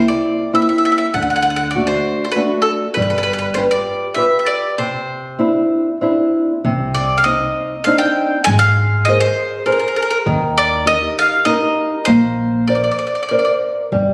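A rubato 3/4 lilt at 99 BPM carries this lively, sunny Italian folk serenade excerpt, where a bright, up-front picked bowl-back mandolin sings the melody on double strings over dark, small fingerpicked nylon-string guitar and woody, thumpy pizzicato upright bass, which drops out at 3.8 s and returns at 6.6 s as the key turns from C major to C minor, the whole heard through a wet recital-hall reverb captured on a phone in the room.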